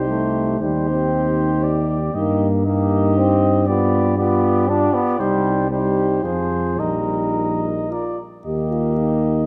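A vintage-toned trumpet carries the melody in this triumphant, noble excerpt of a classical brass quintet piece in Eb major, moving in a rubato 3/4 at roughly 106-119 BPM. A flugelhorn sits in the background on a second line, while a distant, roomy trombone and a soft-attacked, close-miked French horn fill in the accompaniment above an up-front, smooth-topped tuba bass. The harmony leans through C minor and a G7 before settling on Eb at 8.5 seconds, all bathed in a moderate concert hall reverb.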